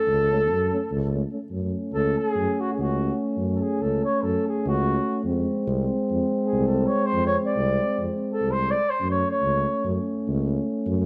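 A moderate recital-hall reverb surrounds this restless, bittersweet Balkan brass band passage, cut from a longer piece, in a straight 9/8 at 288 BPM counted in eighths, set in F# Hungarian minor. A mellow, distant flugelhorn carries the melody with light vibrato and a roomy, classical tone, stepping into a solo at 1.5 seconds and stopping at 9.9 seconds. Beneath it, an up-front, close-miked tuba anchors the bass with its own light vibrato, while two euphoniums accompany: one dark and close-miked, the other smooth-topped and gently vibrato-tinged, all over harmony that drifts from F# minor to F minor and back.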